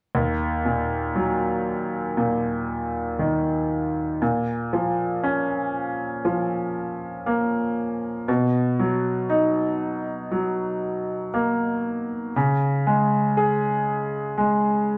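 A melancholic, longing pop piece in Eb minor, taken from a longer work, moves at a slow 59 BPM in a straight 4/4. A bright concert grand piano carries the accompaniment from 0.1 to 15.0 seconds, its brilliant, natural tone sitting up front with deep bass as the chords pass from Ebm through Bbm and Bmaj7 to Db5. The piano rings in a wet studio reverb that gives the sense of a band playing live in one room.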